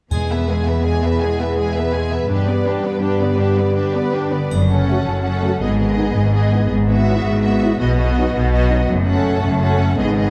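A timpani stroke and triangle open this triumphant, heroic film-score excerpt in 6/8 at 110 BPM in E major, where lush violin sections carry the melody and a second line over expressive distant violas, dark roomy French horn chords, very quiet ringing harp arpeggios and an intense cello bass, before the triangle returns and a focused, up-front double bass section joins at 4.5 seconds for a build-up through F#m, G#m and B in a moderate concert hall.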